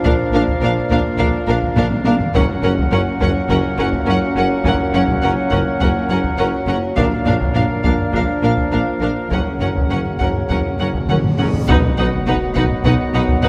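Driven by a distant, heavy-stick taiko ensemble in a straight 4/4, this majestic, heroic cinematic orchestral cue sets a rich, focused violin melody over a soft-attack second violin line, smooth background violas, a very quiet close cello section, and distant double basses alongside a vintage tuba on the bass, while dark French horns, tight trombones and a warm woodwind section hold sustained chords; timpani join at 9.3 seconds, and a huge, bright reverse cymbal and sub drop arrive at 11.4 seconds, leading into an impact at 11.7 seconds, set in a wet scoring-stage reverb.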